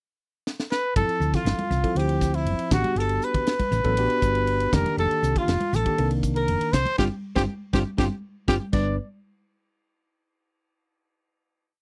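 This is a dry, close recording in a 1970s studio style, with little reverb, capturing a bright, soaring piece of electric jazz fusion at 120 BPM in a straight 4/4, set in G mixolydian. A tight funk drum kit opens with a fill at 0.5 seconds, its high-tuned snare, tight kick and fusion ride groove sitting up front with a natural small-room sound. A mellow trumpet enters at 0.7 seconds and carries the solo melody, building motif-based song phrases with scooped notes, a smooth top and a punchy, forceful jazz attack. From 1.0 seconds the band fills in: a round, dark hollow-body bass plays a syncopated riff, a tine electric piano adds clean syncopated chord stabs in drop2 voicings through its built-in speakers, and a clean, picked archtop guitar doubles in unison from the background. Congas with a thick-skinned, vintage, band-limited tone add a loose pattern underneath, while the harmony moves through sus4 chords such as G13sus4, A13sus4 and F13sus4. 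A band accent drives the last bars toward a resolving G, and a final drum fill sets up the closing hit.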